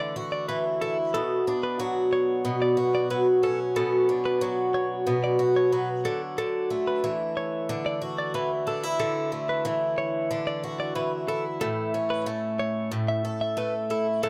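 A straight 4/4 pulse at 92 BPM carries this tender, wistful acoustic pop fragment, which moves from Dadd9 to a long stretch of Bmadd9, back to Dadd9, and arrives on A. A picked twelve-string acoustic guitar sits up front with a boxy, shimmering, octave-doubled sound, with finger squeak audible as it accompanies throughout. Above it, a clean, compressed electric guitar, recorded direct, plays quieter arpeggios in a higher register, all set in light reverb with close, detailed microphones.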